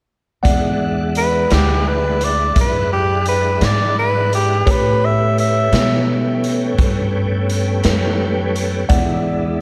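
Swaggering and rollicking, this slow blues excerpt moves at 57 BPM in a straight 12/8 feel in E mixolydian, with a growly pizzicato upright bass and a punchy, gritty garage drum kit up front while a smooth tonewheel organ holds sustained chords through chorus vibrato and a slow rotary speaker. A worn, slightly out-of-tune tine electric piano sits in the background, and from 1.2 to 6.1 seconds a warm tenor saxophone carries the melody with light vibrato, subtone and slapback echo. The harmony moves from E9 to A9 and back to E9, all set in a lush hall reverb with a big arena sound.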